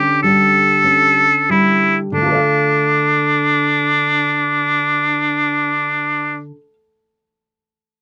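This sounds like a home cassette session in a small booth with a moderate touch of ambience, and the oboe carries a tape coloring. The fragment comes from a longer romantic duo for oboe and classical guitar, solemn and elegiac in mood, in 6/8 with free, rubato timing. The oboe sings the melody up front as the solo voice, bright and classical in style with a light vibrato, and it stops at 6.4 seconds. The nylon-string guitar accompanies, thumb-plucked on fresh strings with a warm acoustic tone, sitting close to the listener and ringing on until 6.7 seconds. The opening passage slows down before a new section begins at 2.1 seconds, where the harmony moves from A7/D to Dm.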